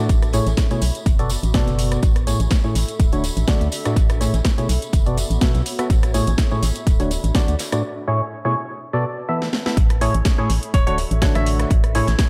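Piano house at 124 BPM in A major, joyful and euphoric, where an up-front hollow organ stab with lush chorus and cassette-tape character pumps over a dark FM bass, a punchy electronic kick, a cracking house kit, a very quiet dark jazz kit, a background tambourine that stops at 7.8 s for the break, and a nostalgic warbling pad, before a drum fill leads into the drop at 9.8 s, where a bright grand piano with audible action noise and diffuse delay briefly appears at 10.7 s over lilting Amaj7, Bm7 and Dmaj7 chords.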